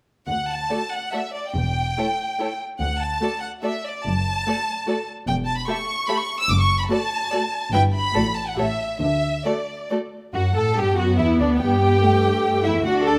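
A quick, cheerful and graceful classical-period movement for string orchestra in a rubato 3/4, cut from a longer piece, with a rich, expressive, up-front violin section singing the melody over bowed double basses and smooth, even cellos from 0.3 seconds, while a second violin line and a viola accompaniment join at 0.7 seconds, all set in a moderate large studio reverb.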